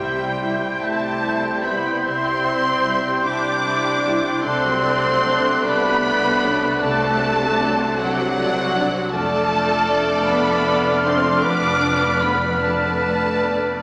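A lush, expressive violin section carries the melody up front, its vibrato warm and singing high above the orchestra in this solemn, yearning slow romantic movement for symphony orchestra. The music moves in a rubato 12/8 at roughly 44-54 dotted-quarter beats per minute, and this 13.8-second passage is cut from a longer piece. Second lines come from a pure, distant silver flute perched high, a smooth-topped oboe, a warm, roomy clarinet, and a second, more focused violin section in the background. A mellow bassoon and a rich, even viola section fill the middle, while a dark cello section and a clear, distant double bass section anchor the bass. A very quiet, dark French horn section holds sustained chords from 0.4 to 13.6 seconds, and a faint thumb-plucked harp rings through arpeggios. The harmony moves from C through D7/C and Dm/F to Bm7b5/F, all bathed in a wet scoring-stage reverb.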